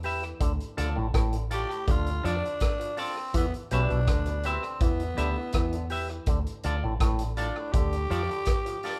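Captured live by a band in one room with light reverb, this roots reggae piece is cut from a longer performance and has a meditative, laid-back feel. Up front, an acoustic drum kit with a punchy kick, hi-hat and rim click sits beside a dark, round, foam-muted electric bass. A clean, hollow-bodied semi-hollow electric guitar accompanies, and from 0.4 seconds a bright, twangy auto-wah clav riff colored by tape echo plays over chords moving from Dm to Em and back. At 1.5 seconds a raspy, growling tenor saxophone with light vibrato takes the melody, standing forward in the mix.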